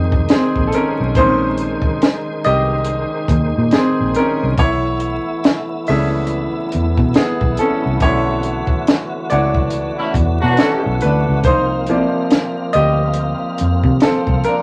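R&B with a neo-soul lean, this soulful, smooth excerpt moves at a relaxed 70 BPM with a swung sixteenth feel, as a clear, woody upright piano takes the lead over a tonewheel organ's sustained chords, colored by chorus vibrato, key click and a fast rotary speaker. A round, foam-muted vintage electric bass and a compact cocktail drum kit with a high-tuned snare and punchy kick hold the groove, while the harmony shifts from Bbm11 to Bm11 at 4.6 seconds and Cm11 at 11.4 seconds. A tight horn section lands punchy stabs within a band accent around 10.0 seconds, all set in a moderate club reverb with a layer of vinyl crackle.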